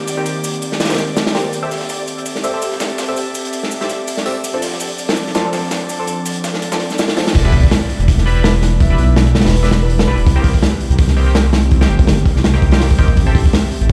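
The sound is big and roomy, as if played through a large sound system in a bare room and bathed in a large studio reverb. This raw, atmospheric drum and bass and jungle piece, cut from a longer track, runs at 165 BPM in 4/4 with a light swing on the 16ths, in E phrygian. An airy, breathy pad with chorus holds sustained chords throughout. A twinkling granular texture sparkles softly in the background, and a band-passed, nasal chord stab cuts through with chorus, phaser and dub echo. Up front, a crunchy acoustic breakbeat kit with a punchy kick, dark cymbals and a saturated, rolled-off top drives the groove. Behind it, a compressed, overdriven sampler-style break adds gritty hi-hat, shaker and snare until the drop at 7.3 seconds. At that point a deep, rumbling detuned saw bass arrives, and at 8.3 seconds a soft, flute-like synth lead with vibrato and dub echo drifts in briefly over chords moving from Em7 back to Cm7 and Am7.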